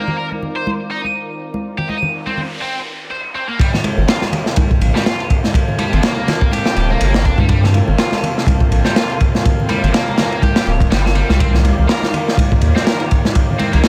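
A heavy, high-gain electric guitar leads this energetic, swaggering breakbeat excerpt, its bright, double-tracked picked riff soaked in distortion, overdrive and delay from the very first second. Beneath it a lush, detuned sawtooth pad holds slow-blooming chords with chorus and sidechain pumping, while close, dry congas ring along throughout. An electronic noise sweep enters at 1.9 seconds to set up the drop at 3.6 seconds, where a crunchy, gritty breakbeat kit bursts in up front with a tight kick, a medium-tuned snare and dark ride cymbal, its top rolled off. A thick, saturated sine sub bass joins at 4.0 seconds, deep and sustained, anchoring the swung groove as the harmony moves from Cm11 to Gm11 and back. The mix is dry, with the drums and bass pushed forward.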